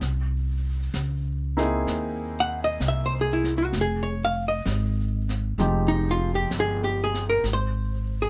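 The recording sounds close and dry, with detailed microphones catching the players up near the ear in a short cut from a longer jazz ballad. The mood is melancholic and smoky, with a slow, swung feel. An upright bass with gut strings sits up front, woody and thumpy, while a brush kit on brushed snare, hi-hat and a high-tuned snare stays softly in the background. A clear, intimate grand piano comps with long sustain and audible action noise until 7.5 seconds. At 2.4 seconds a hollow-body archtop guitar enters with the melody, its clean, picked tone dark and compressed and placed prominently at the front. The harmony moves from an altered C7 through Fm9 before landing on Ab near the close.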